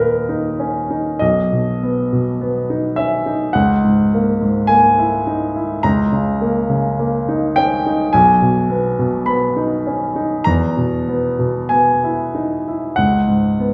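Opening on a bare D#5, a polished, present grand piano with short sustain sits up front in a resonant recital hall as this wistful, mournful romantic nocturne in G# minor drifts in rubato 4/4 at roughly 47-54 BPM, moving through Badd11, A#m7b5/C# and G#m/B to E and a closing C#7(no3) across a 13.7-second excerpt cut from a longer piece.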